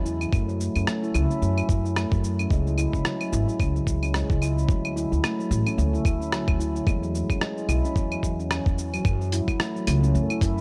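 Hypnotic and earthy, this organic downtempo cut from a longer piece moves at 110 BPM in F# minor with a 16th-note swing, cycling through F#m7, C#sus4, Dadd9 and E before returning to F#m7 at 9.1 seconds. Up front, a ringing, band-limited handpan plays meditative arpeggios with sharp finger strokes through an analog delay, over a woody, dark pizzicato upright bass on gut strings that pumps with sidechain. A dusty soul sampler-style kit of cabasa, claves, hi-hat and rim click and a thumpy, overdriven electronic kick drum give the small, dry room a gritty hardware character.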